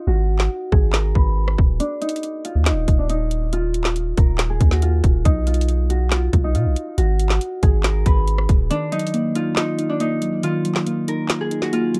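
Trap hip hop at 139 BPM in a half-time feel, dark and eerie, built on Eb harmonic minor with a fingerpicked, ringing Celtic harp melody softened by a low-pass filter and digital delay, while a filter sweep runs until 8.7 seconds. A deep, sine-like 808 bass sustains long notes up front, alongside an electronic trap kit with a hard-clipped kick, woody snare, metallic hats, handclaps and rim clicks. At 8.7 seconds the bass drops out and muted, felt-like synth keys enter with a soft, warbling, vintage chorus tone, all within a close, dry and shadowy mix.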